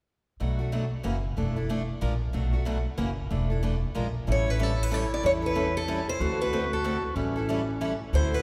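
Acoustic string swing in a playful, lively waltz-time lilt, where a bright, boxy picked steel-string guitar picks out accompaniment over a woody, thumpy pizzicato upright bass from 0.4 s before a second up-front parlour guitar takes the melody at 4.3 s alongside a breathy, intimate clarinet line with light vibrato and scooped notes, all of it bathed in the long, wet reverb of a church.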